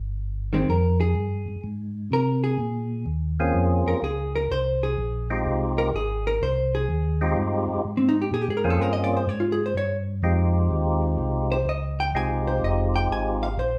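A round, dark tonewheel organ opens this smoky, late-night soul jazz organ trio excerpt, carrying the bass line with chorus vibrato and a slow rotary speaker in a swung 4/4. A clean, compressed hollow-body jazz guitar with a dark, picked electric tone comes in at 0.5 seconds and takes a solo from 0.7 seconds. At 3.4 seconds a fat, lightly overdriven percussive organ adds the melody through its own slow rotary speaker and plate reverb, all set in a wet studio room heard from further back over moody minor-key changes.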